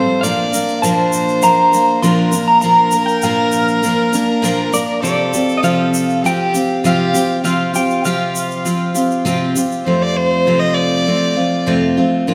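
A picked steel-string acoustic guitar, bright and full-bodied and sitting up front, opens together with a clear, earthy fiddle at 0.0 seconds in this gentle, hopeful acoustic folk piece, cut from a longer work, moving at a straight 100 BPM in 4/4 in F major. The fiddle, a single bowed player with light vibrato, carries a second line while the guitar provides the accompaniment. Almost at once, an electric guitar through a small old amp takes the melody high above them; its tone is slightly broken-up, compressed and lo-fi, with a tremolo effect. A grainy, saturated tube shaker adds soft percussion underneath, as the harmony moves from Bb to Csus4. At 9.9 seconds the music settles on F and the fiddle steps forward for a short solo, while a scoring-stage reverb wraps the whole ensemble in a spacious, wet sound.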